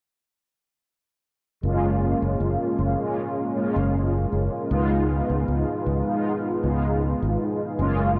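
Nostalgic and dreamy, this vaporwave fragment drifts along in a straight, unhurried 4/4. From 1.6 seconds, a mellow synth brass carries the accompaniment, its round, detuned sawtooth and square-wave tone thickened by a sub octave, a filter sweep, vibrato, ensemble chorus and analog delay. Entering at the same moment, a fingered electric bass sits up front with a growly, overdriven, amped edge in its low register. The harmony moves from F#maj9 to C#9 at 4.7 seconds, with both parts playing through to 8.2 seconds. A lush hall reverb and a dulled cassette-tape sound give the whole passage its hazy, faded sheen.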